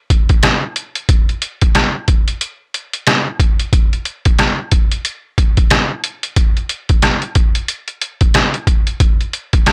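A gritty, pitched-down trip hop drum kit sits up front in this tough, moody hip hop fragment, playing from 0.1 to 9.7 seconds with a thumpy kick, medium-tuned snare, rim click and hi-hat. Compressed and sampler-style in character, the groove moves at 91 BPM in 4/4 with a 60% swing on the sixteenths, and a light reverb gives the room a touch of space.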